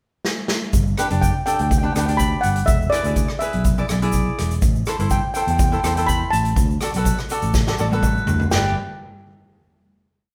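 A boomy street-band drum kit sets a straight 124 BPM calypso groove in G major, entering at 0.2 s and playing a fill from 0.3 s before a round, dark fingered electric bass and a grainy egg shaker join at 0.7 s, while a crisp picked cavaquinho picks triad chords beneath a shimmering, close-miked steel pan that carries a festive, bouncy melody of song-like phrases in a moderately reverberant room, all closing together on a final chord at 8.5 s.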